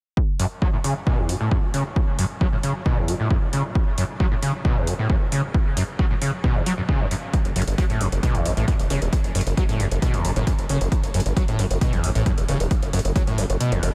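A punchy, up-front electronic kick opens this driving peak-time techno cut at 134 BPM in F# minor, joined almost at once by metallic hi-hats pumping against the kick and a screaming, squelchy acid riff, distorted and resonant, with lush chorus, tape echo and sidechain pumping. At 7.5 seconds a gritty, nasal synth bass with tube saturation pushes in low beneath the riff, adding aggressive weight to the hypnotic, relentless groove held on a single F# minor chord. The kick drops out at 13.6 seconds, leaving the acid line, hats and bass to close this section of a longer piece in light reverb.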